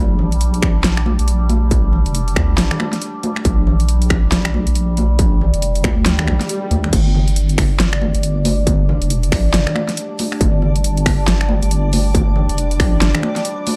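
Deep dubstep rolls in a half-time 4/4 feel at 138 BPM, with a 60% swing on the sixteenths that gives this brooding, dark passage a loping gait. A distorted electronic kick with a tape-warm tone anchors the groove, joined by a layered dubstep kit of huge snare, bright hi-hats, finger snaps and crash cymbal, while ringing, high-tuned acoustic congas with a vintage, band-limited tone drift through dub echo. Up front from 0.0 seconds, a deep, soft wobble bass built from triangle and sine tones sits low with a fast attack and compressed, chorused sustain. Above it, a resonant sawtooth-and-sine drone holds sustained chords on Bb with moving overtones, its slow attack and long release softened by chorus and reverb. A short electronic swell sounds at 6.2 seconds, and from 7.9 seconds a reversed, dreamy, detuned granular texture glimmers in the background. The production is dark and warm, with little reverb, in a fragment cut from a longer piece.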